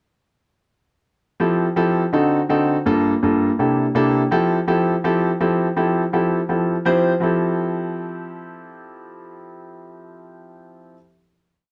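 Jazz with a lively, danceable spirit, this short solo piece sets a natural-sounding, up-front grand piano in a wet studio reverb and a dark, warm production, its syncopated stabs of rootless chords cycling through Fmaj9, D7b9, Gm7 and C13 from 1.4 seconds before settling on a final chord held from 7.2 seconds.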